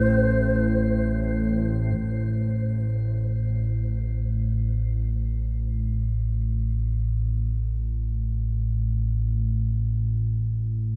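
Dark ambient drone in free time, this excerpt from a longer piece feels desolate and cavernous, centred on A minor. A breathy, bamboo-toned shakuhachi carries the melody for only the opening 0.7 seconds, its unsteady vibrato and soft chiff trailed by tape echo. Beneath it, an up-front analog drone built from sawtooth and pulse waves with pulse-width modulation holds the low register from 0.0 to 11.0 seconds, its nasal, evolving tone thickened by chorus. A faint, crystalline glass pad glints high in the background through the first 2.0 seconds, its sine and noise layers softened by chorus and its own reverb. After the Am chord gives way to open, chordless drone at 2.0 seconds, a filter sweep shapes the drone for the rest of the passage, all of it bathed in a huge, wet reverb with an 8.4-second tail.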